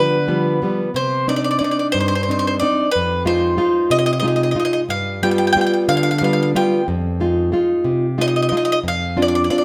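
Italian folk serenade, romantic and wistful, in 6/8 at 61 BPM, where a bright, up-front bowl-back mandolin picks the melody on its double strings over a classical nylon-string guitar fingerpicked on fresh strings, finger squeaks and all, through chords moving from G7 to Cmadd9, Fm7 and Dm7/F, all captured by close, detailed microphones in a moderate recital-hall reverb across this 9.6-second fragment of a longer piece.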